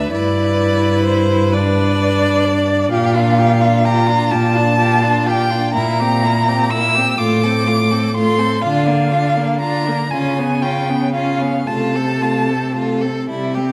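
A string quartet opens together in a serene, lyrical slow romantic movement in F major. The cello's smooth, even bass sits up front beneath a distant, full-bodied viola accompaniment and a clear, focused second violin line. Over them, the first violin carries a warm, expressive melody with vibrato and portamento, spanning B4 to E6 and ending at 13.3 seconds. The quartet moves in a rubato 6/8 at roughly 37-44 dotted-quarter beats per minute, in a reverberant recital hall, passing through a Db7 chord before settling on F/C at 11.7 seconds in this fragment of a longer piece.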